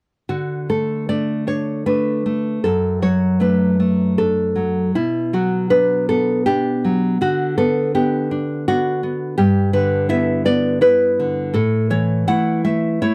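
In an unhurried 3/4 that breathes with rubato at around 75-84 BPM, this tender romantic excerpt for solo classical guitar unfolds in D major, moving through D5, D/F#, Bm, Bm/D, Em7/G and A. The fingerpicked nylon-string guitar sounds full-bodied and up front, ranging from F#2 to F#5 between 0.3 and 13.1 seconds. Light reverb softens a dry, close, 1970s-style studio sound, giving the performance a warm intimacy.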